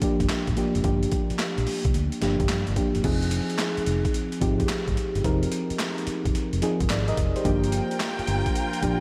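A gritty, sampler-style boom bap drum kit anchors this punchy, confident new jack swing cut, pitched down and overdriven with a thumpy kick, a high-tuned snare, hi-hat, handclaps and a crash cymbal, sitting up front in a big room. At 109 BPM with a swung sixteenth feel in F dorian, a mellow FM electric piano carries the accompaniment, soft and full-bodied with a fast attack, a noise layer and a chorus effect. A vintage muted fingered electric bass joins at 0.2 seconds, dark, round and amped. The chords move from Gm7 to Fm7 at 3.0 seconds, and a crisp, barely audible group handclap appears around that stretch. At 7.5 seconds a lush studio string section arrives with bowed sustained chords, warm vibrato and a smooth top as the harmony returns to Gm7, all bathed in a lush hall reverb that gives the fragment a big arena sound.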